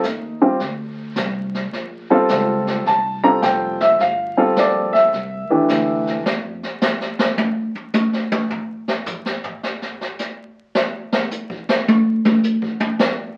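A woody upright piano leads this swinging jazz trio excerpt in F major at 106 BPM, carrying the melody through a brief progression from a rootless F7 through Bbsus2, Gm9 and Cadd9 before stopping at 6.2 seconds. Plucked upright bass sits low and quiet beneath it until 6.6 seconds, while a distant, roomy brush kit with a high-tuned snare, boomy kick and rolled-off top continues into a drum solo from 6.2 seconds to 13.2 seconds. Moderate studio reverb and the crackle of a very old 78 rpm record give the whole piece a warm, aged character.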